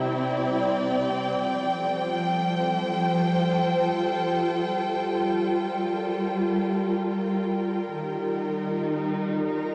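Ambient, spacious and reflective, this short excerpt sets a lush, bowed symphonic string section up front, holding sustained chords with vibrato and a smooth top under shimmer reverb, while a mellow, nasal, evolving analog drone on G3 fades in from the background through chorus, the whole recording bathed in a huge 7.2-second reverb and the warbling pitch drift of worn cassette tape.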